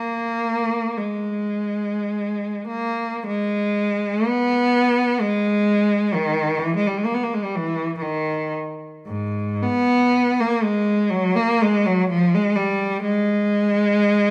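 Yearning and lonely, this short excerpt from a longer classical piece gives the floor to a single unaccompanied cello for its full 14.3 seconds. The music moves freely and expressively in three, with uneven beats and a rubato feel that lets each phrase stretch and breathe. One bowed cello carries everything from the low register upward, its tone rich and focused and shaded with vibrato. The instrument sits up front, captured by close, detailed microphones, while a moderate scoring-stage reverb adds a sense of space around it. The opening idea is stated briefly and then returns at 3.3 seconds to fill the rest of the passage, deepening the solitary, yearning character.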